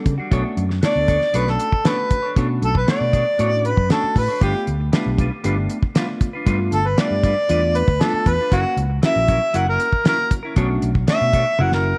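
A small room's light reverb wraps this smoky, soulful straight-eighth soul blues excerpt in B minor at 117 BPM, where an overdriven harmonica carries the jazz-style solo melody with vibrato and scooped notes, up front yet roomy, over a phased tine electric piano, a punchy amped fingered bass, twangy picked stabs from a clean electric guitar, and a dry, damped 70s drum kit with a fat snare and tight kick that closes on a fill at 11.6 seconds as the chords move from Bm9 through G7 and F#7 back to Bm9.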